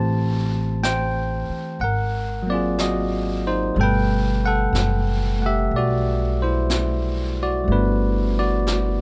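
Dry, close and detailed, this intimate late-night jazz ballad excerpt swings gently at 61 BPM in G major, with a bright, bell-like tine electric piano up front moving through Am7, Ab9 and Gmaj9 over a woody pizzicato upright bass, as a soft, rolled-off brushed kit with a high-tuned snare and hi-hat slips in at 0.8 seconds.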